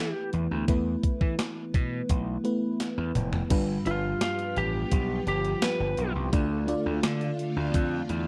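This urgent, nostalgic slice of 1980s-style pop at 85 BPM in a straight 4/4 opens on an Esus4 chord, with a dark, slightly broken-up lead guitar carrying the melody up front alongside a lush, dreamy FM electric piano layered with a soft pad and treated with chorus. A gritty slap bass, bright, punchy and overdriven, sits just as close in the mix. At 0.3 seconds a gated 80s digital drum machine arrives with a thumpy kick, a gated reverb snare, hi-hat, toms and crash cymbal, its sampler-style, tape-tinged sound the most forward element, and a drum fill leads into the next section. There the harmony shifts to G7 and a vintage string machine with violins joins at 3.5 seconds, holding shimmering, slow-attack chords in the background. The guitar drops out at 6.1 seconds, shortly before the chords move to Dm, leaving the mellow keys, bass, drums and strings. The whole recording is dry and close, like a 1970s-style studio session, and the clip is cut from a longer piece.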